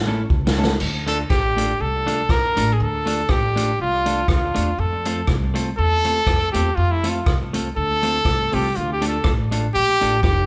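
A clear, close-miked trumpet with vibrato takes an up-front solo from 1.1 seconds in this mischievous, driving ska clip, after a drum fill on a punchy, naturally roomy vintage kit opens the first 0.8 seconds and a woody upright piano adds brief background stabs, while a pizzicato upright bass with a bright, steel-string bite and a clean, compressed semi-hollow guitar treated with tape echo carry the swung groove through Dm and F in a live room with a moderate large studio reverb.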